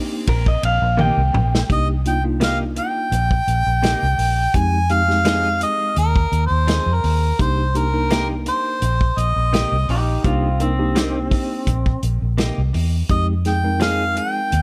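Smoky and mournful, this fragment of a straight-eighth soul blues in C minor moves at 84 BPM. It opens with a clean electric guitar solo, a faint, biting symphonic string section and a drum fill, and then an overdriven harmonica takes the melody at 1.7 seconds, close-miked and up front, with light vibrato and scooped notes. Beneath it, a worn, slightly out-of-tune tine electric piano with light overdrive holds the accompaniment over Cm7 and Fm7, a dark, round, foam-muted fingered bass sits forward, and a tight soul drum kit with a rolled-off top plays hi-hat, kick, snare, ride and toms, while a slightly broken-up, lo-fi guitar through a small old amp adds a second line that returns at 9.9 seconds and a direct-recorded clean guitar places compressed stabs with tape echo in the background of a dry mix.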